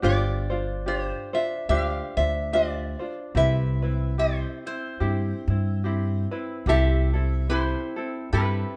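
A lap resonator guitar carries the melody up front, its slide lines metallic and nasal, with the bright bite of fingerpicks on the strings. This short Hawaiian passage, cut from a longer piece, drifts at a languid 72 BPM in 4/4 with a gentle swing on the eighth notes, in C major and tuned slightly low to A4 = 439 Hz. A tenor ukulele fingerpicks a light, warm accompaniment close beside it, while a pizzicato upright bass with steel strings adds a woody, thumpy foundation and stops just before the end at 8.6 seconds. The harmony moves from G7sus4 to Cmaj7 at 3.4 seconds and settles on C6 at 6.7 seconds as the opening phrase returns. Light reverb wraps the acoustic trio in a dreamy, relaxed glow.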